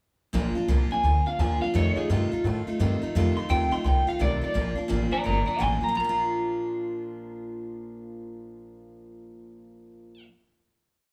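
Opening at 0.3 seconds with a bright, full-bodied acoustic guitar strumming eighths in open chord shapes over a woody upright bass walking through Bb and F7, this rowdy, rollicking swung rock piece at 171 BPM in Bb major brings in a twangy, slightly broken-up electric guitar with tremolo at 0.9 seconds for a lick-based theme that returns, the band playing live in one room with a large studio reverb before settling on a final chord from 6.0 seconds.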